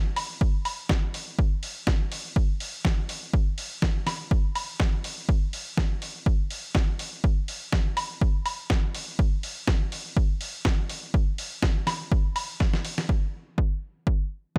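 Nostalgic and funky, this house groove sits at 123 BPM in 4/4 with a light 16th-note swing, cut from a longer piece. A gritty, tape-warm, sampler-style soul kit of hi-hat, medium-tuned snare and woodblock carries a compressed, large-room character and pumps with sidechain on its hats, percussion and cymbals, rolling into a drum fill at 12.6 seconds. Alongside it, a dry, punchy analog kick with overdrive sits up front and carries on alone after the kit stops at 13.1 seconds, all in a nearly reverb-free mix.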